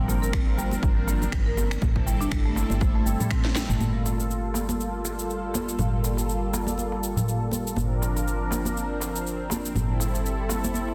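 A punchy, layered electronic kick drives this spiritual, driving afro house cut until 3.4 s, when a drum fill from the afro-pop kit, with its sharp, softly clipped snare, snaps, shaker and toms, carries the groove into the next section. Rosewood marimba arpeggios, dark and smooth under a filter sweep and digital delay, play only through the opening 3.8 s. Meanwhile a round, woody FM bass anchors a low G and a detuned sawtooth analog pad with chorus holds sustained chords, all three pumping with the sidechain. Clay-shelled darbuka and bright, close congas sit in the background of a dense, heavily limited mix with light small-room reverb.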